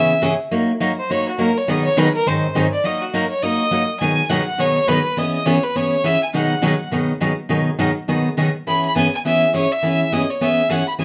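A clear, bowed fiddle with a light vibrato opens with a focused, slightly boxy solo over a picked steel-string acoustic guitar, giving this cheerful, down-home country passage its swinging lilt from the first beat. At 4.0 seconds the tune moves into a new section, the fiddle carrying the melody while the guitar's woody, full-bodied picking of well-worn strings keeps the accompaniment steady and close. Both players sit up front in a lively studio room that sounds like a band playing together, and the clip is cut from a longer piece.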